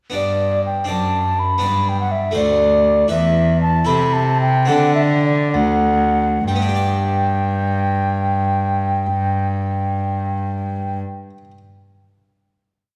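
Radiant and serene, this brief baroque-style sonata movement in a lilting 6/8 sets a mellow, pure-toned wooden flute with vibrato and crisp attack over a rich, reedy gut-string cello playing a close, up-front walking bass, while an airy, brilliant Flemish-style harpsichord adds plucked, rolled chords in the background. The pace slows from 2.4 to 6.5 seconds, easing into a final G major chord that the flute and cello hold until 11.0 seconds and the harpsichord until 11.6 seconds. A wet recital-hall reverb and dark production give the whole piece a soft, enveloping glow.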